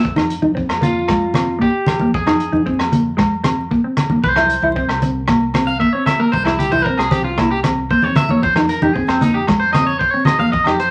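Vinyl crackle and a wet studio ambience frame this danceable highlife guitar-band excerpt in F minor at 114 BPM: a clean electric guitar solo runs throughout over a gritty, punchy breakbeat kit of kick, hi-hat and rim click, a round, dark fingered dub bass, a mellow phaser-tinged guitar accompaniment, ringing agogo bells, bright soft-handed congas and, from 0.8 seconds, a twangy, slightly broken-up guitar playing arpeggios up front, with the chords moving from Fm7 to C and back.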